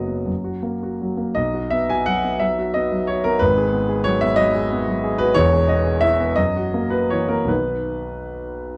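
A dark, warm studio sound with moderate large-room reverb frames this brief fragment of a passionate, lyrical romantic character piece for solo grand piano, whose polished, present, up-front tone rings with long sustain from E1 to G#5 as it moves in a rubato 6/8 through F#, B5, G#m7, E and F#7 before settling on B at 7.5 seconds.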